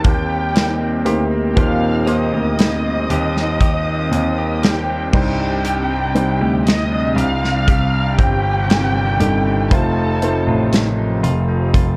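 A straight, unhurried 4/4 pulse from an up-front acoustic drum kit, with its tight kick, medium-tuned snare, hi-hat and crash, carries this heartbroken, longing pop ballad fragment, while a polished grand piano holds down the low bass line and a natural-sounding baby grand fills in the accompaniment. A dark violin section sings the melody from 0.1 seconds with vibrato, portamento and a soft, bowed attack, over a thick, warbling unison pad of detuned sawtooth and square waves with chorus. Further back, a twangy, direct-recorded clean electric guitar picks arpeggios through tremolo and tape echo as the harmony moves from Eb6 to Cmadd9 to F7, all in a small room with light reverb and a cassette-tape character.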